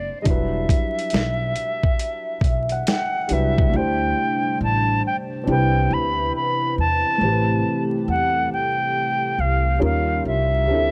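An airy, up-front silver concert flute with vibrato carries the melody in this reflective, hazy lo-fi hip hop excerpt in E minor at 69 BPM, swung in 4/4, over a muted, intimate felt upright piano with audible action noise and cassette-tape coloring, a woody pizzicato upright bass, and chords moving from Em9 through D7sus4, Cmaj7 and Am7 to D#9. A compressed sampler-style drum kit with a thumpy kick, snare and hi-hat plays from 0.3 to 3.7 seconds, the piano adds a fill from 2.0 seconds, and at 3.7 seconds a dark, detuned analog pad with chorus enters on sustained chords. The small room sound is dry and gritty, dusted with vinyl crackle.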